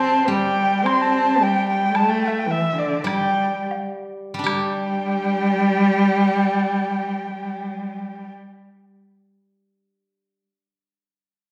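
A dark, nasal erhu carries the melody up front with vibrato and sliding portamento, while a rich, expressive bowed cello plays a soft-attacked second line beneath it in this graceful, pastoral piece of Chinese chamber music, cut from a longer work in a rubato 2/4. A silvery steel-string zither, played with fingerpicks, rings softly underneath, and a close, dry woodblock taps in the background as the music slows from 1.9 s. The erhu and cello fall silent at 8.3 s, leaving the zither to ring on to 10.4 s in a wet recital-hall reverb heard from further back in the room.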